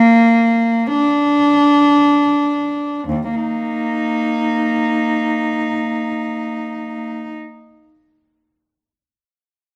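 This classical fragment, taken from a longer piece, is a free and expressive passage for unaccompanied cello, with a lonely, meditative mood and a free-time feel. A single bowed cello, played sul tasto with a soft attack, spans from Eb2 to Eb4 and sounds pure and floating. The cello plays from the opening to 7.3 seconds, slowing down over the first 3.1 seconds before a new section begins. Close, detailed microphones keep the instrument up front, while a recital hall reverb, with an RT60 of 1.4 seconds, lends the tone a faintly distant glow.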